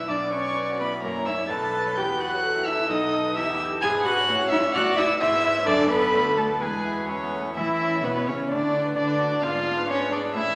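Cheerful and graceful, this quick classical-period movement for piano quintet moves at 129 BPM in a straight 2/4, starting in B minor before turning to A major from 3.8 s. A violin carries the melody from the very start, its sound pure and floating with a soft attack and the veiled tone of sul tasto bowing, placed up front yet with a distant quality. A second violin shares that soft, pure character on a second line, while a dark, woody cello supplies another second line with vibrato and a close presence. A dark viola joins at 0.1 s as accompaniment, intimate and airy-bowed, alongside a bright, brilliant grand piano that fills out the harmony with a natural tone. The chords pass through colorful turns such as G#m7b5 and a closing G#dim7, and the strings and piano sit in a wet scoring-stage reverb that gives the fragment a spacious glow until it cuts off at 10.6 s.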